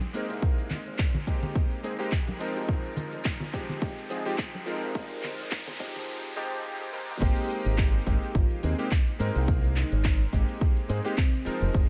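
Lightly reverberant with a digital ambience, this sunny, feel-good nu-disco excerpt builds through a filter sweep as a bright, clangy electric grand piano with analog chorus and sidechain pumping, an envelope-filtered fingered electric bass, a punchy, up-front electronic kick, a house drum kit with metallic hats, handclaps, shaker and toms, thick-skinned congas until 6.1 s and a background riser all lead into a drop at 7.2 s, where a soft, round, octave-layered synth lead with phaser and vibrato enters at 8.4 s.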